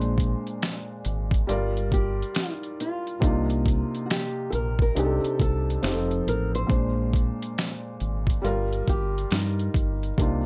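Lo-fi hip hop at 69 BPM with a swung feel, reflective and hazy, cut from a longer piece and moving through jazzy chords such as Bb9, Gm7 and Cm11. A small, dark nylon-string guitar carries the melody, thumb-plucked with finger squeak and a plate reverb. Beneath it sit a felt-muted upright piano with audible action noise, a round, deep dub fingered electric bass, and an up-front boom bap sampler-style kit of finger snaps, hi-hat, a thumpy kick and a medium-tuned snare, gritty and pitched down, all inside a light reverb with a dulled top end.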